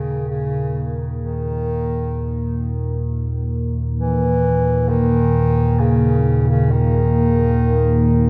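A deep, rumbling drone sits up front in this ominous, vast dark ambient fragment, its wave-folded tone warbling with a vintage character. A mellow bass clarinet carries a soft-attacked, distant melody touched with delay, while a moody, detuned pad holds sustained chords through a chorus effect. All three fade in together over the full 8.3 seconds, bathed in a cathedral-like reverb.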